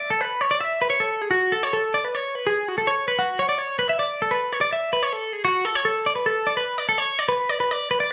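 Playful and intricate, this short rock passage is cut from a longer piece and features a lone twelve-string electric guitar played solo from 0.0 to 8.1 seconds. Set in an odd 5/4 metre with a straight feel, the picked guitar rings out bright and clean with a twangy edge, its compressed tone sitting up front in the mix. The part stays within a fairly narrow register between F#4 and E5. A wet, large studio reverb surrounds the instrument, giving the sense of a band playing live in one room. The music shifts into a new section at 6.3 seconds, carrying on until the passage ends at 8.1 seconds.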